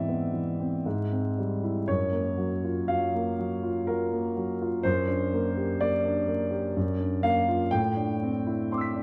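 Impressionist classical solo piano, this nine-second fragment of a longer piece has a serene, luminous mood. A concert grand carries the music alone, unfolding in 3/4 at roughly 58-64 BPM with a supple rubato feel, tuned slightly high at A4 = 441 Hz. The instrument sounds up front and open, with a deep bass reaching down to F#2 while its upper range extends to B6. The harmony drifts through colorful chords, moving from E7b13/G# and C/Ab to F#maj7 at 1.9 seconds, then through Gm/F# and Bb/F# before arriving on Am11 at 7.7 seconds. A moderate concert hall reverb with a 2.4-second decay surrounds the piano, and the dark, warm production adds a layer of vinyl crackle.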